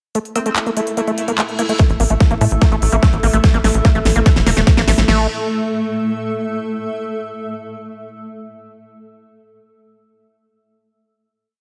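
Psychedelic trance at 146 BPM with an alien, psychedelic mood: a squelchy, gritty acid bass with distortion, sampler grit and delay loops a three-step line that drifts against the bar, over a pulsing, gated drone, brief metallic FM wobble-bass phrases, and a blurred, detuned granular cloud pad of slowly shifting chords, all pumping with the sidechain. Crisp programmed hats, claps and a huge, tape-toned snare drive the opening until a reverse cymbal at 1.2 seconds leads into a build at 1.8 seconds, where a punchy four-on-the-floor kick, crash and snare fill arrive with a nasal, rolling sixteenth-note sequencer bass as the acid line's filter sweeps. From 5.1 seconds the pad rings on as the final chord, carrying on alone once the drums and bass lines stop by 5.3 seconds.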